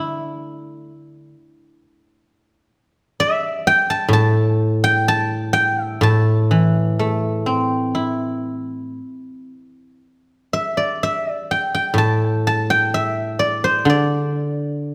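Set in a moderate recital-hall reverb, this elegant, contemplative fragment of a longer Chinese traditional piece features a solo acoustic guzheng, played up front with fingerpicks across a span from A2 to A5, whose silvery, ringing tones unfold in the A yu mode at a rubato 62 BPM with uneven beats before moving into a new section at 10.0 seconds.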